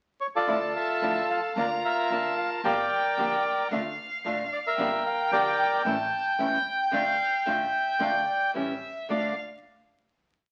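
Dramatic and passionate, this brief, complete tango moves with a rubato feel as a reedy, close-miked bandoneon carries a motif-based melody up front, joined by a distant, expressive violin whose vibrato and portamento shape a rich counter-melody. Beneath them, a bright nylon-string guitar fingerpicks short tango chords with audible finger squeak, while a second bandoneon and a woody pizzicato upright bass sit in the background, marking a marcato tango rhythm in four. The sound carries the crackle of a very old 78 rpm record and a wet studio reverb, and the piece closes on a final chord from 9.1 seconds.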